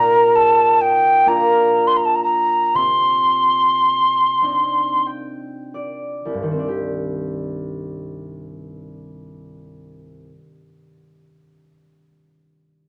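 Mournful and haunting, this rubato Celtic slow air in C minor moves in 6/8 at roughly 27-44 BPM and slows through its opening, as an up-front wooden whistle with a hollow chiff, crisp attack and vibrato sings the melody until 5.1 seconds, while a quieter, bright, ringing, thumb-plucked concert harp accompanies, adds a fill from 4.4 seconds and carries on alone to 10.7 seconds in moderate studio reverb, all of it cut from a longer piece.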